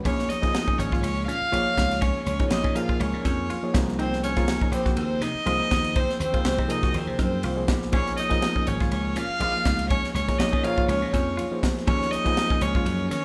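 Electric jazz fusion in Bb minor at 122 BPM, with a nocturnal, slick mood and a light sixteenth-note swing in 4/4. An overdriven, gritty reed electric piano heard through a combo amp sounds alone at 0.0 s, and the rest of the band joins at 0.1 s, with every part playing through to 13.2 s. Up front, a single bowed violin carries the melody with a rich, gut-string, period-style tone and light vibrato, while a raspy, growling tenor saxophone adds a second line beneath it. A clean, compressed semi-hollow guitar picks stabs in the background, and a punchy, foam-muted thumbed slap bass sits dry and direct under a tight funk kit with bright cymbals, a high-tuned snare and an airy, polished sound. The band plays live in one room, bathed in a large studio reverb, as the harmony moves from Bbm7 to Cm7b5, back to Bbm7 and on to Ebm9 in this fragment of a longer piece.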